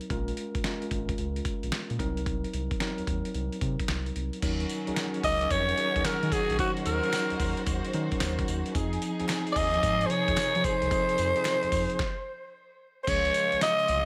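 A 66% swung 16th-note groove at 111 BPM drives this confident, bouncy new jack swing R&B excerpt, where a gritty, compressed sampler-style kit with thumpy kick, tambourine and crash, a round, deep analog bass and a mellow tine electric piano set up minor-seventh chords, lush bowed strings slip in at 4.4 s, a breathy, raspy alto saxophone takes the up-front melody with scooped notes from 5.2 s, very quiet crisp handclaps join at 9.3 s, and a brief stop lands before the closing Dbmaj7, all in light reverb.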